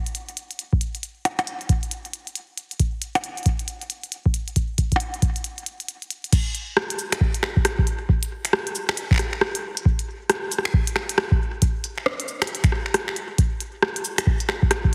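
A deep, analog electronic kick drum sits up front from 0.7 seconds, beneath a clicky, delay-treated glitchy kit of cabasa, crash cymbal, finger snaps, hi-hat, rim click and percussion blips that carries a tape-warm tone and the echo of a large room, giving this cerebral IDM fragment at 136 BPM in 4/4, swung at 62% on the 16ths, a restless pulse through its shift to a new section at 6.3 seconds, all framed by light reverb and a heavily compressed radio sound.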